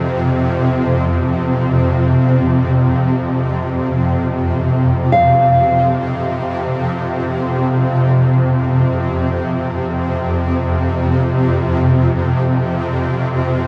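A huge, wet reverb and the soft haze of cassette tape surround this spacious, haunting piece of world meditation music, heard as an excerpt from something longer and floating in free time with tuning set to A4 = 435 Hz. A shimmering, ethereal pad sits up front, its detuned sine tones and octave-up glimmer sustaining a low drone from F2 to C3 through chorus and its own reverb. At 5.1 seconds a thumb-plucked classical nylon-string guitar enters, adding a warm high F5 texture above the drone until the close at 13.7 seconds.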